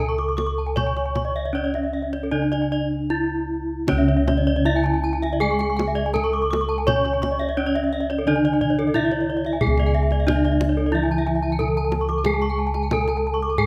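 A dark, smooth bronze metallophone carries the melody up front in this brilliant, hypnotic excerpt of Balinese gamelan in C# pelog, moving at a straight 77-91 BPM in 4/4 while round, full bossed gongs anchor the bass close and dry. Two more metallophones spin arpeggios, one bright under horn mallets and the other mellow and soft with padded mallets further back. Tight kendang drumming enters at 0.2 s and a boxy lower metallophone accompaniment joins at 3.9 s, with the paired tuning filling the moderate recital-hall reverb with shimmering beats as the music moves into a new section at 9.6 s.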